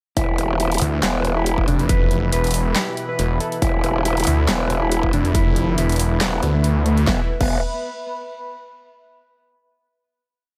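Heavy wobble dubstep with a half-time, swung feel and a menacing mood, this short piece is almost entirely one drop that gives way to a final chord at 7.1 seconds. A growling, saturated growl bass with chorus and overdrive sits up front, its modulated phrases wobbling at changing speeds. From 0.8 seconds a snarling, detuned saw bass joins with chopped, overdriven phrases. The punchy electronic kick and a big-room dance kit, with a huge snare, metallic hats, handclaps and crash, drive the beat. Above them, a dark, clean electric guitar repeats a fingered riff through spring reverb and delay, while lush supersaw chords pump behind a low-pass filter in the background. A warbling, lo-fi tape-like pad with chorus and slowly shifting chords carries on alone after the other parts stop, in a digital ambience.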